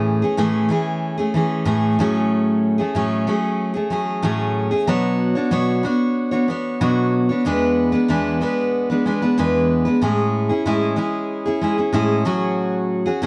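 Sunny and carefree, this short pop excerpt at 93 BPM in A major features a solo picked steel-string acoustic guitar, full-bodied and up front with the jumbo body's resonance and an audible finger squeak, ranging from E2 to C#5 under light reverb as it moves through Amaj7, F#madd9/A, Bmadd9 and E7 before returning to Amaj7 at 10.0 seconds, with the tuning sitting slightly below standard pitch.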